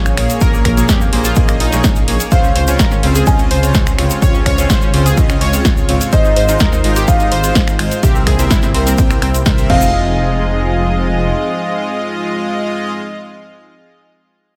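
Progressive house at 126 BPM in F minor, this bittersweet, emotional drop opens on a mellow, boxy concert grand piano melody over a lush, warbling unison pad, a round, chorused analog pluck arpeggio, smooth supersaw stabs and a deep, rumbling detuned saw bass, with the piano, pad, pluck, supersaw and bass all pumping to the sidechain and digital delay trailing the piano, pluck and stabs. A punchy, tape-warm electronic kick and a house kit of snare, hi-hat, finger snaps and crash drive the groove alongside a grainy egg shaker tucked in the background, until the drums drop out at 9.8 seconds and the bass follows at 11.3 seconds. Chords move from Bbm7 through Dbmaj7, Ab6 and C7 to Fm7 under light reverb and digital ambience in this cut from a longer piece.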